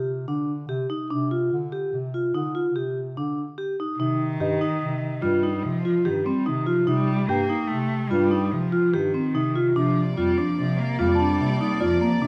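A ringing vibraphone spins restless arpeggios up front in this hypnotic contemporary chamber piece in 7/4 at 146 BPM in C dorian, over a breathy, vibrato-laced bass clarinet bass line, joined at 4.0 seconds by a dark, sul tasto cello second line and moments later by a bell-like celesta texture in the background, with a studio string section adding sustained chords from 9.8 seconds, all set in a moderate recital hall reverb.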